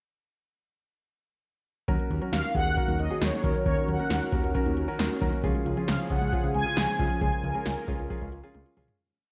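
Lightly reverberant digital ambience with faint lossy compression artefacts frames this short, nocturnal and driving synth-pop piece at 135 BPM in a straight 4/4, moving from Gb/Eb to Db. An overdriven analog drum machine with a deep kick, punchy snare and metallic hats sits up front under gated reverb, a fat sawtooth bass pulses beneath, a clear grand piano plays syncopated triads, a smooth detuned pad holds chorused chords in the background, and a soft, round pluck runs dark arpeggios in sixteenths through chorus and analog delay. From 2.3 seconds a mellow, brassy synth lead with ring modulation carries hook phrases up front, and the whole thing fades out from 7.2 seconds as a drum fill closes it at 8.5 seconds.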